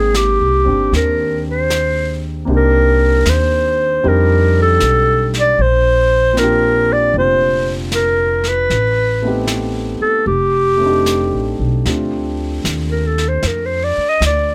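A breathy clarinet with light vibrato sings the melody over intimate, vintage-toned grand piano accompaniment with audible action noise, woody pizzicato upright bass and airy brushed snare and hi-hat in this romantic, late-night swing jazz ballad, captured with close, detailed microphones and little reverb, before the up-front clarinet takes a solo at 11.9 seconds.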